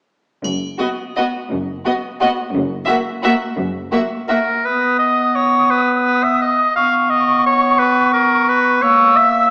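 Heard through worn, warbling old cassette tape with pitch drift, a small-speaker sound and wet concert-hall reverb, this sweeping, elegant orchestral ballroom waltz in B major at 172 BPM in 3/4 sways with uneven beats and rubato, as rich bowed double bass and cello sections and a brief close triangle open at 0.4 seconds, a clear, focused violin section carries the melody over lush, up-front second violins and smooth violas, and from 4.3 seconds a bright solo oboe, soon joined by a bright clarinet and an airy small flute group with rolled-off highs, takes over the second lines in this excerpt from a longer piece.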